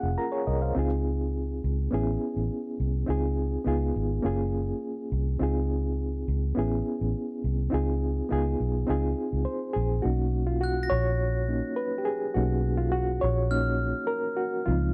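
Lush and romantic, this 1970s-style soul excerpt moves at a straight 104 BPM in 4/4, with a reedy, worn, slightly out-of-tune electric piano heard up front through its built-in speakers, its fast tremolo opening with a brief fill and gliding over lush major-seventh chords. A dark, foam-muted, round and punchy fingered electric bass anchors the harmony throughout. At 10.0 seconds the electric piano takes a solo over a Cbmaj9 chord, and from 10.6 seconds a quiet glockenspiel struck with brass mallets adds bright, sparkling bell tones, all in a dry, close studio sound.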